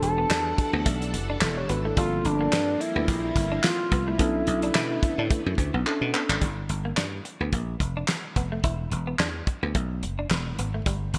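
Early-eighties boogie funk at 108 BPM with a swung sixteenth feel, this funky, slick excerpt is driven throughout by an up-front damped 70s drum kit with a fat snare, tight kick, hi-hat, handclaps and gated reverb, a growly, foam-muted thumbed slap bass, and a compressed, picked clean guitar riff with lush chorus sitting in the background. Over Em11, Gm11 and Bm11, a smooth, mellow sawtooth-and-triangle lead glides with portamento and vibrato, joined by a worn, slightly out-of-tune tine electric piano with light overdrive and a vintage string machine holding sustained, slow-attack chords with a sub octave. The lead stops at 5.9 seconds as a drum fill begins, and from 6.4 seconds the rhythm section carries on alone over Gm7 and E7(no3), all within a bright digital 1980s-style production with plate reverb.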